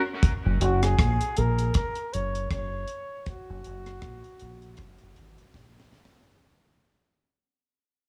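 A breathy flugelhorn carries the solo melody from 0.6 seconds, its soft attack, light vibrato and whispered, intimate tone trailed by dub echo in this spacious, hazy dub reggae fragment at 79 BPM in F# major, cut from a longer piece. Underneath, a dark, round fingered electric bass sits up front in the low register between F#1 and A#1, while a dry acoustic drum kit with a high-tuned snare, tight kick, hi-hat and rim click keeps a swung 4/4 feel. A small room reverb surrounds the ensemble as the whole passage fades out, and a drum fill closes it from 5.5 seconds.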